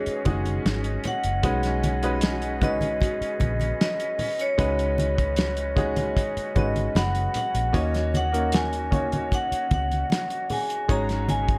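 A ringing, metallic vibraphone struck with hard mallets carries the melody in this lush, cinematic 1970s-style soul excerpt, set in Eb minor at a smooth, unhurried 76 BPM in straight 4/4. Beneath it, a clear grand piano plays intimate accompaniment with its action noise audible, while a bright, airy flute section holds soft-attack sustained chords with vibrato. A delicate, bell-like celesta adds sweet texture in the background until 11.2 seconds, and low-tuned congas with a thick, damped skin sit quietly behind the groove. The foundation comes from a dark, round, foam-muted fingered electric bass and an up-front, cloth-damped drum kit with a fat snare, tight kick, hi-hat and a rolled-off top. The harmony drifts through suspended and extended chords, Ab7sus4, B69, Db9sus4 and Ebm7, before returning to Ab7sus4 near 10.9 seconds, all within a studio ambience.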